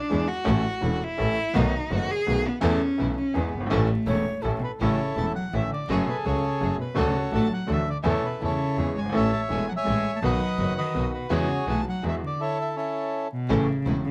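Vinyl crackle sits over a close, detailed recording with a light reverb, giving this nostalgic, elegant tango excerpt in three-time a freely breathing, rubato feel. An expressive cello opens up front, bowed with vibrato, soft attacks and portamento. Beneath it, a bright, woody vintage upright piano carries the accompaniment with long sustain. A clear, earthy bowed double bass anchors the low end, and a lush studio string section adds distant stabs in the background. At 4.1 s a breathy concert flute with a crisp attack slips in briefly as a second line. At 4.6 s a dark, reedy bandoneon enters with the melody in a smooth tone, and the ensemble pauses together at 12.4 s.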